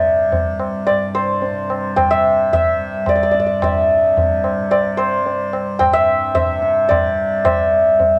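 Radiant and meditative, this short passage from a longer Hindustani classical performance moves at 109 BPM in a straight seven-beat cycle. The santur carries the melody between C5 and G5, its hammered strings shimmering and ringing up front in the mix. Beneath it, the tanpura sustains a low drone from C2 to C3, softly plucked with a buzzing, shimmering resonance that sits well back. The low-tuned tabla enters at 0.3 seconds, close and dry with a short ring, and joins the other two parts until the end at 8.2 seconds. A wet, club-sized reverb gives the acoustic sound a lively sense of space.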